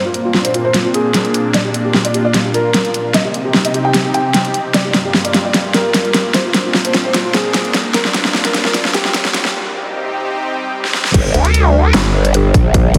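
Aggressive and heavy, this half-time wobble dubstep passage at 150 BPM in G phrygian opens with a soft, felt-muted upright piano melody with delay over a lush, detuned supersaw pad with phaser, sidechain pumping and a low-pass filter sweep, plus an overdriven drum kit with a huge snare, hi-hat, handclaps and crash, building through a faint riser and swell and a break at 9.5 seconds before the drop at 11.1 seconds unleashes a growling, saturated bass, a punchy overdriven electronic kick and a brief nasal vowel-sweep wobble bass, all bathed in lush hall reverb under heavily compressed, radio-like mastering.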